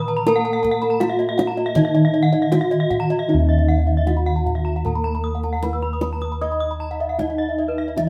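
Balinese gamelan with a ceremonial, shimmering mood, heard in a short cut from a longer piece, where the paired tuning of the bronze metallophones gives their ringing tones shimmering beats. A wooden-mallet metallophone carries the melody over a mellow, soft accompaniment struck with padded disc mallets in the background, while two arpeggio lines sparkle above: one also wooden-mallet, the other bright and airy from a horn mallet and touched with tape echo. Up front, round, beating bossed gongs hold the bass, and a tight, close kendang played with hard hands joins at 0.3 s, all sounding like a band playing live in a moderate stone room.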